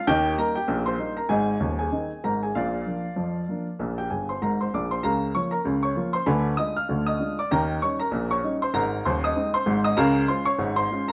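A woody, polished upright piano plays alone, up front in a moderate stone-room reverb, in this cheerful, lively ragtime passage cut from a longer piece at 97 BPM in a swung 2/4, with a fill at 4.1 seconds leading into Ab major at 5.0 seconds, where the harmony moves through Bbm/Db, Ddim7 and Eb7 back to Ab and on to Db.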